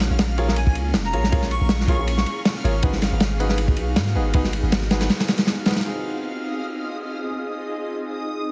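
A frenetic, atmospheric drum and bass excerpt in F phrygian at 159 BPM opens on a drop, with a crunchy, saturated breakbeat kit of tight kick, dark ride and snare, a deep, mellow 808-style bass, a blurred granular cloud pad with 12-bit sampler grit and a reversed, swelling texture up high, while lo-fi, low-passed baby grand piano stabs with dub echo enter at 0.4 s and a bright, airy, chorused lead floats briefly on top, then after the drums stop at 5.8 s a filter sweep on the piano carries the closing Fm7 over the pad through a heavily compressed, radio-like sound.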